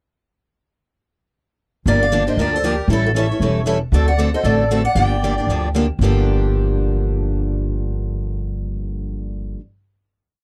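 From 1.9 seconds, a complete, fiery jazz manouche piece in G minor swings at 231 BPM: a bright, boxy picked steel-string guitar with audible finger squeak states a motif-based melody, shadowed by a reedy, shimmering musette accordion line mostly in thirds, while one parlour guitar drives a four-to-the-bar rhythm, short and accented on two and four, a second, warmer plugged-in guitar adds a second rhythm part, and a woody, thumpy upright bass plays up front in a two-beat root-and-fifth pattern, all in a dry, close 1970s-style studio sound; the lead and accordion stop at 5.7 seconds as the rhythm section rings out on a final chord until 9.6 seconds.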